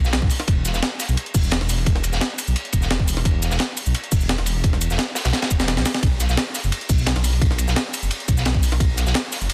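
A swelling detuned saw bass stands out in this short cut from a longer liquid drum and bass piece. Its sawtooth and sine tones evolve through a filter swell, moving from a fast attack into sustained, mellow low notes that sit up front with a menacing edge. Beneath it, a punchy, layered electronic kick, re-recorded in a small room, drives the straight 4/4 groove. Two breakbeat kits fill out the rhythm. A compressed, pitched-up sampler-style kit brings a gritty snare, hi-hat, ride and shaker close to the listener with a tape-tinged colour, while a crunchy acoustic kit adds saturated, mid-forward hats, dark cymbals and a snare with a rolled-off top. A drum fill arrives at 5.3 seconds, the kick drops out from 5.7 to 6.0 seconds, and the soulful, melancholic mood sits in a small room reverb under a dense, heavily limited master.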